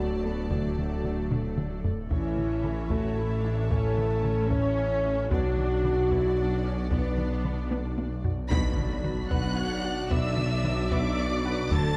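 In a straight 6/8 at 75 dotted-quarter beats per minute, this tense, futuristic cinematic cue blends orchestra and electronics in B minor, moving from D to A to B minor. Warm, lush violins carry the melody with soft-attacked vibrato while a second, more distant violin section adds an intense line beneath, and clear studio violas fill in the accompaniment. Mellow French horns hold sustained chords over a hollow, airy pad with chorus, and the low end is stacked deep with bowed cellos and double basses, a dark tuba, and a thick, beating, menacing detuned saw bass. A very quiet analog pluck ripples through arpeggios from 0.3 seconds, and compressed, saturated taiko drums struck with hard sticks enter at 0.5 seconds, adding fills along the way. At 8.5 seconds the ensemble hits an accent as an electronic impact lands, all set in a dark production with moderate scoring-stage reverb in this fragment of a longer piece.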